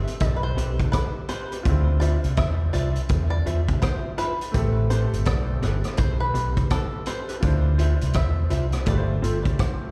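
Heard through a venue's PA with a touch of recital-hall reverb, this bittersweet, smooth lovers rock reggae cut at 83 BPM in A minor sets a mellow, twangy banjo melody played with fingerpicks, carrying tape and slapback echo, over a bright, worn baby grand piano with audible action noise and dub echo sitting in the background, a dark, round, foam-muted electric bass and a punchy vintage kit of kick, hi-hat and rim click up front, and slightly broken-up, lo-fi guitar stabs with warbly pitch drift entering at 0.6 seconds, while the harmony moves between Am9 and Dm9 before landing on G9sus4.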